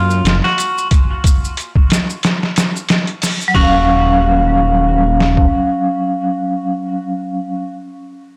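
A dark, brooding trip hop fragment opens with a clean, hollow-body electric guitar melody roughened by 12-bit sampler grit and dub echo over a deep, rumbling detuned saw bass with tube saturation, soon joined by soft-handed maracas and a swung, compressed, pitched-down sampler-style drum kit with a thumpy kick; at 3.5 seconds the maracas stop and a metallic, ringing hard-mallet vibraphone with tremolo and tape echo enters, carrying on with the guitar after the bass and drums stop at 5.5 seconds, all in a blown-out, overdriven recording with light digital ambience.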